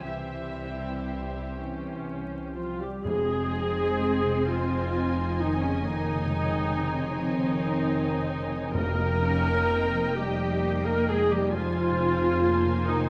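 Up front, a muted viola section carries a veiled accompaniment with light vibrato in this slow, rubato cinematic piece in 6/8, around 39-45 BPM in F minor, full of longing and sorrow. Muted violin sections play the melody and a background second line over a lush cello section and smooth-topped double basses. Meanwhile, a dark, roomy French horn section holds sustained chords, a very quiet concert harp plays ringing thumb-plucked arpeggios, a mellow clarinet adds a second line from 1.6 s, and soft-mallet timpani sound a round F between 3.0 and 10.1 s, all caught by close, detailed microphones in a moderate concert hall reverb with a layer of vinyl crackle, in a passage cut from a longer piece.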